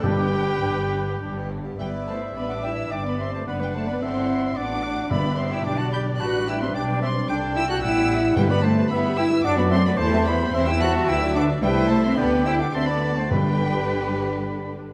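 Moving in a lilting three-beat metre with a flexible, rubato feel, this quick classical-period symphony movement sounds cheerful and lively, and it is cut from a longer piece. High in their range, the violins carry a rich, focused melody with vibrato and a smooth top, while a second violin section adds an expressive, close line in the background. Underneath, a distant viola section provides bowed accompaniment, a lush symphonic cello section and a double bass section anchor the bass, and a dark French horn section holds soft-edged sustained chords. Woodwinds weave supporting lines: a warm solo oboe with light vibrato plays throughout, a clarinet is heard only at the very start, and an airy concert flute joins at 1.8 s. A very quiet, mellow trumpet section adds brief, tight stabs at the opening. Articulate timpani struck with hard mallets sound at the start, return from 5.1 s to 9.1 s, and come back again at 13.3 s. 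The harmony moves through simple major-key progressions, and a moderate scoring-stage reverb gives the whole a dark, warm production.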